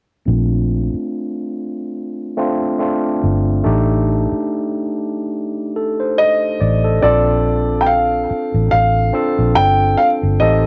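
A warm grand piano carries the melody from 6.2 seconds, its intimate, natural tone touched by audible action noise and colored by cassette tape and analog delay. This relaxed, sensual R&B fragment moves at 71 BPM in 4/4 with a light 16th-note swing, set in Bb major and cut from a longer piece. From 0.3 seconds a barky tine electric piano supplies the accompaniment, its bright, lightly overdriven sound pushed through a combo amp and shaped by a low-pass filter that sweeps until 7.0 seconds. Underneath, a vintage muted fingered electric bass holds the low end with a dark, round, punchy, foam-muted tone. The harmony moves from Bbmaj7 to Am7b5 and back to Bbmaj7 as the second section begins, all wrapped in light reverb and the homespun character of a cassette home recording.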